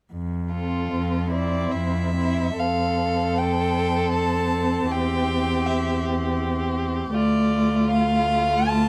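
A single violin carries the melody up front with a smooth, even, vibrato-laden tone in this serene, romantic string quartet movement, heard as a passage cut from a longer piece in F major and 3/4 at a slow, rubato 64-82 BPM. The rich cello opens the bass line at 0.1 s, close and steady, and the second violin, sounding more distant, and the dark, soft-edged viola join at 0.5 s, both bowed with expressive portamento. The harmony moves from F to C/E and then D minor, and a new passage begins at 2.6 s, all set in a moderate studio reverb.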